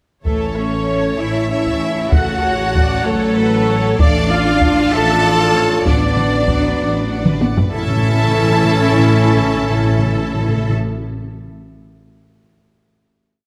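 This majestic, adventurous orchestral film cue opens at 0.2 s with a close, hard-struck taiko ensemble driving a big drum ostinato, while double basses hold a smooth, bowed A on the beats and violas weave a counter-melody in the background. Moments later the cellos take the melody with a focused, close tone. Distant violins double the tune an octave up, and a second violin line rocks through a two-note figure. In the background, roomy French horns double the tune in thirds and octaves, crisp trumpet stabs shadow it, and very quiet trombones add slow swelling chords. At a stately 64 BPM in 6/8, the harmony in A major moves from A through F#m, Dm and Bm over the held A bass, and timpani with hard mallets punctuate the change at 2.1 s. A short drum fill leads into the closing A major chord at 7.7 s, where the timpani return and the taiko soon falls away, with the whole orchestra set in a lush, wet scoring-stage reverb.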